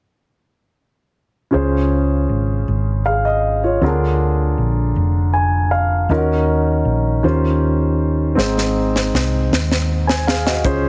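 A warm concert grand piano with a deep low end and a dark, round, punchy hollow-body electric bass open this reverent, uplifting slow gospel excerpt at 1.5 s, moving through Dbmaj7, Bb7, Ebm7 and Eb13 to Ab in Db major at 53 BPM in 6/8, with a piano fill at 5.0 s before a dry funk drum kit, its snare high-tuned and kick tight, enters at 8.4 s with a fill, all set in a small room with light reverb and a heavily compressed, radio-like sound.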